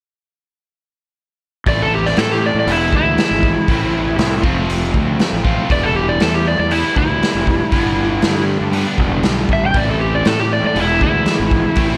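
Blues rock in the power trio mold with a southern rock lean, this smoky, heavy excerpt moves at 119 BPM in a straight 4/4 feel in A minor. At 1.7 seconds the full band arrives together, with an overdriven slide guitar carrying the melody up front, its fingerpicked tone warm and ranging from E4 to G5. Beneath it, a double-tracked semi-hollow guitar plays the riff with a bright, picked, hollow-body bite, while a fingered bass with fuzz and overdrive adds a growly, punchy low end. The raw garage drum kit sits up front with a punchy kick, a medium-tuned snare and hi-hat, its saturated, gritty sound dark and rolled-off on top in a stone room. The chords move from Am and E through F, Em and G before returning to Am and E, all set in light reverb.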